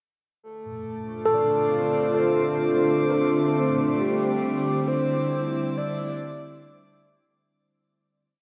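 An up-front, mellow FM pad with ensemble chorus shifts slowly from Dm7 to Cadd9/D in this melancholic, reflective free-time ambient piece in D minor, accompanied by a breathy, flute-like synth lead that enters just before it and fades in with soft call-phrase motifs, vibrato and diffuse delay, a barky, lightly overdriven tine electric piano scattering notes until 4.0 seconds, a tense, string-like bowed drone with ring modulation that fades out, and a calm drifting glass-harmonics texture holding a high note, set inside a huge 7.8-second reverb with a cassette-tape character.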